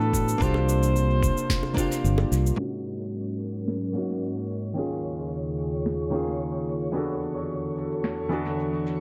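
Sunset chillout with a smooth, warm mood, this excerpt opens with a clear, vintage-toned flugelhorn melody with light vibrato and analog delay. Beneath it sit a dark, clean archtop guitar steeped in dub echo, an airy, breathy pad with chorus, and an up-front fingered electric bass, while a gritty, overdriven kick drum, electronic cabasa and sharp snare with dub echo, and very quiet, high-tuned bongos supply the beat. From 2.6 seconds a filter sweep moves through the pad, and a twinkling granular texture with octave-up shimmer enters at 3.2 seconds in an echo-heavy, low-pass-filtered mix with moderate chamber reverb.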